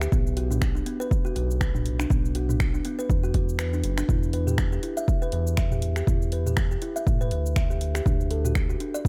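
A swung sixteenth-note groove in four drives this short afro house fragment, anchored by a punchy, overdriven electronic kick that sits up front, while an afro-pop kit adds cabasa, finger snaps, toms and warm hi-hats. Beneath it, a round, deep analog bass blends sawtooth and sine tones with a touch of ring modulation, its sustained, mellow notes pumping against the kick. A woody kalimba with a hollow-box ring plays thumb-plucked arpeggios, pumping in the same way and trailing a tape echo. A brief break falls between 3.6 and 4.1 seconds, and the harmony moves from Bm to Em7 and then to D. Set in a digital ambience, the mood feels spiritual and earthy.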